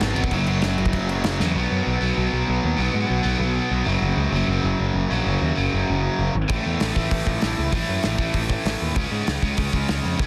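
Energetic, rowdy punk rock at 194 BPM in a straight 4/4: a growly fuzz bass sits up front beside a tight distorted guitar riff and a crunchy overdriven guitar, while a double-tracked, biting overdriven guitar hovers in the background until 1.6 s, and a loose acoustic drum kit with a punchy kick and dark cymbals plays a fill at 1.4 s, drops out, then returns at 6.5 s, in a dry, dense, heavily limited mix over power chords moving from F#5 through B5 and A5 to C#5.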